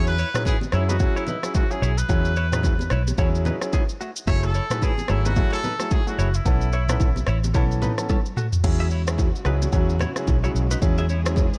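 A swung 16th-note afrobeats groove at 110 BPM in E major carries this joyful, breezy excerpt, built on a deep-kicked, up-front electronic afro-pop kit with crash, rim click, shaker and toms, a dark, round, foam-muted fingered bass, and very quiet, band-limited bongos and congas. A distant, roomy trumpet sings the melody with light vibrato and digital delay until 7.4 s, over an intimate baby grand piano with audible action noise and long sustain, while a bright, twangy, direct-recorded clean guitar picks a riff soaked in lush chorus and delay. After a drum fill, a studio string section enters in the background at 8.6 s with expressive, bowed sustained chords, vibrato and portamento as the harmony returns to E69, all set in a small room ambience.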